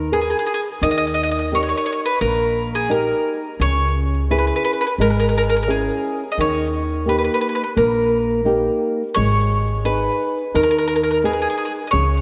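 Italian folk serenade with a romantic, wistful mood, a lightly swung 4/4 feel and a minor-key progression that settles back on its home chord, heard as a 12.2-second excerpt of a longer piece. Up front, a picked bowl-back mandolin carries the melody on double strings with a touch of delay, beside a boxy, thumb-plucked flamenco guitar whose finger squeaks stay audible. A woody, growly pizzicato upright bass sits lower beneath them, and a long plate reverb bathes the whole mix in a dreamy haze.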